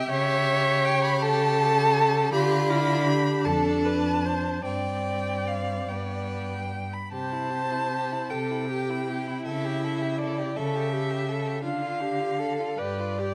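From the first moment, a string quartet plays a serene, slow romantic classical movement in 6/8 at 47-56 BPM with a rubato feel: the first violin carries a warm, vibrato-laden melody up front, the second violin and viola add rich, focused inner lines, and the cello's smooth-topped bass also sits forward, each part bowed by a single player in a moderate recital hall reverb as chords such as A7/C#, Dm, Gsus4 and C pass through this passage cut from a longer piece.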